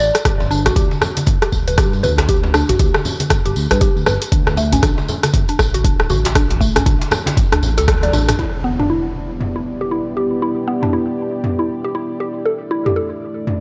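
A dry, gritty recording with light reverb carries this earthy, driving afro house cut in E minor at 118 BPM, swung on the sixteenths, where an overdriven, up-front electronic kick and deep house kit of hi-hat, rim click and toms push beneath woody, round FM mallet plucks spinning arpeggios through chorus, phaser and tape echo. A smooth, gliding sawtooth bass pumps under the groove while low-tuned congas, a medium-tuned djembe and a jingly vintage tambourine sit in the background, all dropping out after a drum fill and band accent near 8 seconds. An electronic impact lands at 8.4 seconds, and from 9.2 seconds a deep, moody analog pad with a slow attack swells up front over Em7 and Asus4 chords as the kit and plucks carry on.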